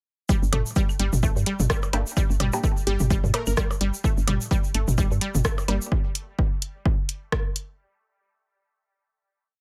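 A cool, sparse minimal techno piece opens at 0.3 s with a punchy, tape-kissed four-on-the-floor kick, a grainy hand-played egg shaker in sixteenths, and a squelchy, resonant blip pluck cycling a 6-step loop that drifts against the bar through chorus, dub echo and sidechain pumping. A woody, round FM bass rolls in staccato with tube saturation and pumping, while a small-room analog drum machine adds closed hats and rim clicks, and electronic toms, woodblocks and claves click in cross rhythm under light reverb. A muted, deep dub chord stab echoes through phaser and delay at 1.9 s, and a plucky, detuned unison lead offers short catchy phrases at 2.9 s, before the kick and drum machine carry on alone to the end.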